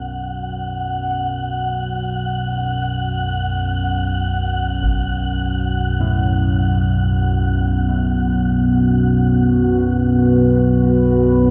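This desolate, unsettling dark ambient drone opens on an analog drone that sits up front, its nasal sawtooth and pulse-wave tones evolving beneath a touch of chorus, alongside an airy, breathy wind-like texture of tuned noise that hovers high and mellow in its own built-in reverb. Moving in free time, the piece is an excerpt from something longer and never settles into a pulse. At 4.8 seconds a solo taiko drum struck with heavy sticks lands briefly in the background, close and dry behind a low-pass filter. From 6.0 seconds a warm, natural grand piano adds short-sustained arpeggios far back in the mix, lightly coloured by subtle chorus and delay. At 7.8 seconds a deep, moody analog pad enters up front with detuned square, sawtooth and triangle layers and a sub octave, its sustained chords treated with chorus and phaser. A huge ambient reverb soaks the whole dreamy mix.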